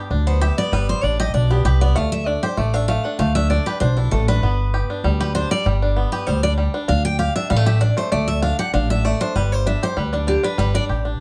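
A twangy, percussive banjo played with fingerpicks opens this rustic, driving bluegrass excerpt at 195 BPM in straight 4/4, joined almost at once by a woody, growly pizzicato upright bass sitting up front. From 0.3 seconds a bright, full-bodied picked dreadnought guitar, with audible finger squeak, takes a prominent solo role over a simple G and D5 progression. The repeated section returns at 9.4 seconds, all set in light reverb.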